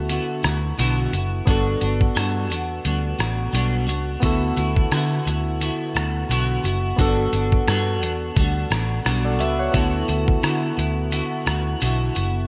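A clean, twangy electric guitar with lush chorus and vibrato accompanies this dreamy, sunny indie and bedroom pop excerpt, moving between D69 and Gmaj7 in D major at 87 BPM with a light swing on the 16ths. Soft, detuned electric-piano-like synth keys with a filter sweep and chorus sit beneath, while a dark, foam-muted vintage fingered bass and a gritty, compressed soul sampler-style kit with a thumpy kick, hi-hat, rim click and gated reverb carry the groove. A moderate plate reverb and bright 1980s-style digital production give the piece a glossy sheen.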